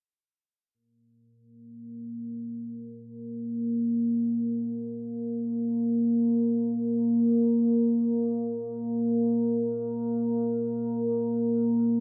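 A light digital reverb and a low-pass filter shade this smoky, melancholic trip hop fragment, cut from a longer piece and unfolding in free time, with a filter sweep running from 0.7 seconds to the end. At 1.8 seconds a deep, moody ambient pad enters up front, holding sustained chords built from sawtooth unison tones with a sine sub octave. Its slow attack and long release, together with its chorus and built-in reverb, give it a mellow, brooding glow.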